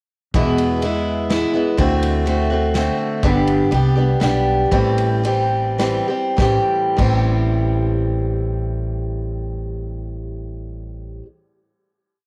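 A dusty, lonesome honky-tonk waltz in classic country style, heard as a complete piece on a home cassette recording with light small-room reverb. An up-front, boxy parlour acoustic guitar with cassette tape grit strums open chord shapes through E, D7, G and Am7. A woody pizzicato upright bass plays root-and-fifth lines with walk-ups beneath it, and an airy, polished drum kit with punchy kick, snare, ride and crash keeps the 3/4 groove. The band slows through the second half of the opening phrase and lands on a final chord at 6.4 seconds. The drums stop at 7.2 seconds, while the bass sustains until 11.2 seconds and the guitar rings on until 11.3 seconds.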